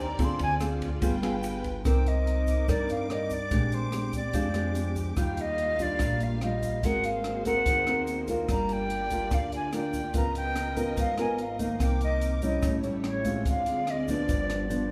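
An airy silver concert flute with a crisp attack and straight tone carries the melody in this melancholic, intimate bossa nova excerpt in C minor at 145 BPM, taking a solo from 0.0 to 1.9 seconds over thumb-plucked nylon-string guitar, lush bowed symphonic strings with vibrato, woody pizzicato upright bass, a dark compact cocktail drum kit with tight kick, hi-hat, ride cymbal and rim click, and a grainy tube shaker in the background, all set in a moderate recital hall reverb as rich chords such as Cm9, Ebmaj9 and Db13 unfold.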